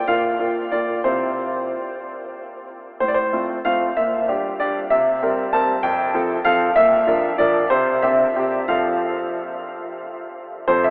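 Lilting 6/8 time moves in dotted quarters at roughly 59-66 BPM, shaped by a free rubato that gives this short cut from a classical-period piano sonatina a playful, graceful character in F major. A solo grand piano carries everything, ranging from F2 up to A5, its tone bright and brilliant yet natural, and placed up front in the mix. The harmony moves through a sunny cadential pattern, opening on Bb5 and C before settling into F/A, Gm/Bb, C7 and F at 5.8 seconds, then circling through Bb and C to land on F at 8.7 seconds. What sets the recording apart is its setting: a huge, wet reverb with a 9.5-second decay places the instrument in a vast, echoing space, while a narrow telephone-like filtering colours the overall sound. The result pairs a tidy, elegant keyboard phrase with a dreamlike, echoing atmosphere, and the passage ends at 10.9 seconds.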